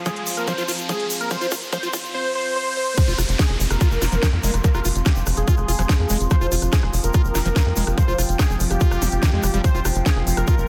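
A straight 4/4 pulse at 144 BPM drives this hypnotic, intense psychedelic trance passage in F minor, cut from a longer piece. From 0.1 s an up-front, tight electronic kick leads the drums, with a layered garage kit adding a cracking snare, crisp hats, rim clicks and crash, both given a tape-warm character and a large-room re-recording, while a grainy, bright tube shaker sits in the background. The opening three seconds form a build-up, with a drum fill and an electronic riser and downlifter, and the drop lands at 3.0 s as a tight, nasal sawtooth-and-square sequencer bass enters with a punchy filter pluck. Above it a thick, detuned unison lead carries the melody with vibrato, phaser and dub echo. Further back, a squelchy, screaming acid line with distortion and tape echo churns out its resonant riff. A sustained drone of moving overtones holds F3 beneath a warbling, nostalgic lo-fi pad, and sidechain pumping on the drone, pad, lead and acid line breathes with the kick inside a dense, heavily limited modern master.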